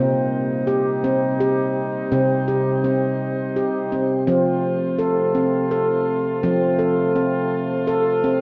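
In a straight 6/8 at 56 dotted-quarter beats per minute, this short, hypnotic fragment of meditative world music for tuned percussion sits in C dorian, tuned to A4 = 442 Hz, and moves from Cm to F at 4.3 seconds. Up front, a bright, ringing stainless-steel handpan plays airy arpeggios with sharp finger strokes, while a quieter brass section holds sustained chords with a soft attack, light vibrato and a classical ensemble style; both parts carry a shimmer reverb. The whole 8.4-second excerpt is bathed in a wet plate reverb with a 2.6-second decay and has the character of cassette tape.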